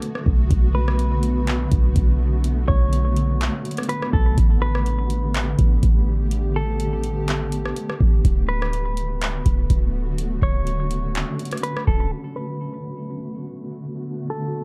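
A deep, boomy 808-style sine bass enters at 0.3 s up front, paired with a booming analog drum machine whose deep kick, metallic hats, handclaps and rim clicks sound re-recorded in a small room, driving this hazy, ethereal cloud-rap excerpt at 124 BPM in a half-time feel in B minor. Beneath them, a detuned, blurred granular pad sustains mellow chords through Bm7, A9sus4 and D6 with its own reverb, sidechain pumping and low-pass filtering, while a dark, compressed clean electric guitar plays a fingered melody through a low-pass filter and delay. Bass and drums stop at 12.1 s, leaving pad and guitar under a filter sweep until 14.6 s, all in a dark production with little reverb.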